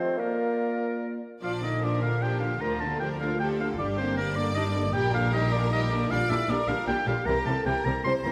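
A quick, cheerful classical-period movement for symphony orchestra in 3/4 at 154 BPM, played with a lively rubato in Bb major and cut from a longer piece. A clear oboe sits up front throughout over a mellow, distant French horn section's sustained chords, while a clear clarinet, an airy flute and a warm bassoon sound only briefly in the opening second. From 1.4 s the strings enter, with a focused violin section carrying the melody in the background, a bright, intense violin section on a lush second line, smooth viola accompaniment, and cellos and double basses on the bass, all bowed with vibrato and wrapped in a wet scoring-stage reverb as the harmony moves from Bb through G minor toward C7.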